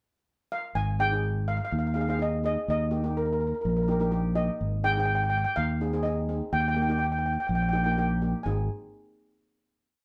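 Sunny and festive, this short, complete calypso piece moves at 125 BPM in a straight 4/4 in Ab major, tuned slightly low to A4 = 438 Hz. A double-seconds steel pan carries the melody from 0.5 seconds, struck with medium rubber sticks and sitting up front in a boxy small-room sound as it spins a motif-based tune built in sentence-like phrases. At 0.8 seconds a fingered electric bass arrives, direct and amped, also up front, with a warm tone as it plays a two-feel root-and-fifth line. Cello pans, also struck with medium rubber sticks, supply airy rhythmic chords in triad voicings from 1.0 seconds. Both pans have a metallic, shimmering ring. After a pickup bar, the verse alternates between Ab and Eb before settling on a final Ab chord, all heard as a band playing live together in one room with a moderate studio reverb.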